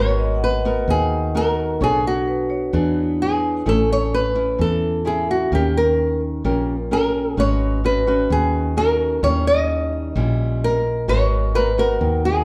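Captured live in one large studio room with a moderate 1.2-second reverb, this smooth, intimate bossa nova excerpt at 129 BPM in G# minor places a small, fingerpicked nylon-string guitar melody up front over a second fingerpicked nylon-string guitar accompaniment, one of them squeaking on fresh strings, and a warm, foam-muted, directly amped fingered electric bass, while a dark, ringing vibraphone with medium hard mallets and motor off sits in the background, dropping out at 5.5 seconds and returning at 9.9 seconds, as the harmony moves through chords such as G#m9, Amaj7 and D#7b9.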